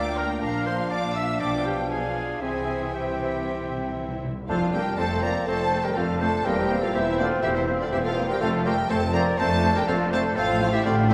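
A resonant recital-hall reverb wraps this cheerful, graceful classical-period movement for symphony orchestra in F major, a brief cut from a longer piece moving briskly at 122 BPM in a straight 4/4. A lush, close violin section carries the melody with expressive vibrato while a more distant second violin section slides with portamento, joined by a pure, crisp-attacked flute and, in the background, a clear oboe and a mellow clarinet on supporting lines. A clear bassoon and a smooth viola section accompany, a warm French horn section holds sustained chords, cellos and double basses anchor the bass, and timpani add a fill from 2.4 to 4.5 seconds before the music settles onto F.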